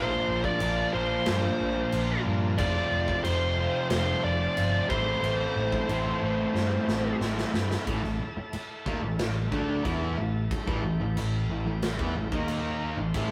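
Driving and heavy, this hard rock section at 91 BPM in A phrygian moves from Bb, F and A minor into a grinding A5 passage, all under a bluesy, distorted lead guitar melody that sits up front until 7.2 seconds. Beneath it, two bright, compressed distorted guitars (one double-tracked) and a third overdriven guitar play riffs in the background, while a growly, punchy picked bass drives the low end and a very quiet, gritty tonewheel organ holds thick chords through a slow rotary speaker. A big, airy acoustic kit with a punchy kick enters at 0.4 seconds and plays a fill from 6.5 seconds, all set in a stone-room reverb with the rough, saturated feel of a rehearsal-room recording.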